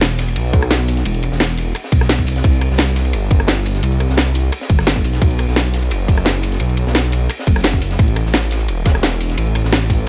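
Dreamy and uplifting, this liquid drum and bass excerpt runs at 173 BPM in a straight 4/4, built on a menacing, detuned sawtooth bass with tube saturation and a filter swell that sits up front and evolves across its low range. A garage kit of hi-hat, rim click and a cracking snare plays from the start, joined at 0.5 seconds by a tight electronic kick, both up front in studio reverb. Beneath them, a quieter breakbeat kit adds gritty, saturated texture with dark ride cymbals and a high-tuned snare in a small, rolled-off room.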